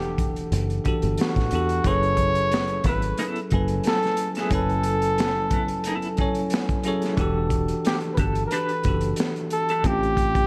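A lightly swung 90 BPM groove in 4/4 sets up this smooth, late-night R&B and neo-soul excerpt in F# phrygian, carried by a crunchy, saturated breakbeat kit with a tight kick and high-tuned snare, and a punchy, foam-muted fingered electric bass. Over bell-like tine electric piano chords moving from Em11 to F#m11 and back, a solo flugelhorn sings the jazz-style melody up front with light vibrato and scooped notes. A dark, compressed clean electric guitar adds a tremolo-treated second line from 2.9 to 9.8 seconds, all set in a small room with light reverb.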